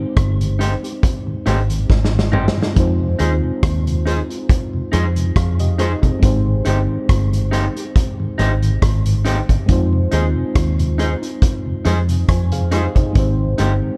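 Bittersweet and longing, this short lovers rock reggae passage, cut from a longer piece, moves at an unhurried pace with a lightly swung feel, drifting between Abmaj7 and Fm7 chords. A vintage drum kit sits up front with a punchy kick, medium-tuned snare, rim clicks, hi-hat and toms in a pumping small room, its top rolled off, and a drum fill lands between 1.9 and 2.8 seconds. Beside it, a foam-muted fingered electric bass gives a dark, round, amped low end that is just as forward in the mix. A soft FM electric piano with a fast attack, decaying tones and a faint noise layer carries the chords through a chorus effect, while a flute-like tonewheel organ with key click, chorus vibrato and tape echo sits clean and mellow in the background. Stabs from a bright, twangy electric guitar through a small old amp, picked and slightly broken-up, enter at 0.6 seconds, all within a dark, warm small-room production.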